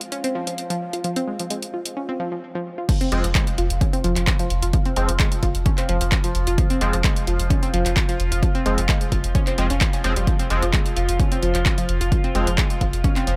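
Relentless and dark, this excerpt of driving peak-time techno at 130 BPM in F minor opens with a resonant drone of moving overtones, a layered tape-warm kit of handclaps, hats and crash, and a nasal, chorused analog pluck riff with phaser and delay, then after a short break drops at 2.9 seconds on an Fm chord as a punchy overdriven kick enters, and moments later an edgy oscillator-sync polysynth stab with a moving notch and a round sine sub bass join the pumping, sidechained mix in a digital ambience.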